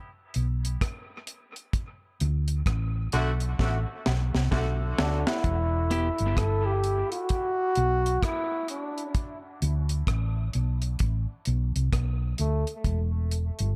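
A dark, lightly reverberant studio mix opens this slow, swung dub reggae excerpt at 65 BPM, with a dry, up-front drum kit of tight kick, high-tuned snare, rim click and hi-hat over a round, amped hollow-body fingered bass moving between D5 and Em. A distant, roomy horn section with light vibrato adds a brief echoing second line during the opening break and drum fill, before a clear, present solo trombone with scooped notes carries the melody through dub echo from 5.0 s to 12.7 s. A bright, twangy clean electric guitar, high-pass filtered and echoed, flickers in for a moment near 5.9 s, deepening the spacious mood.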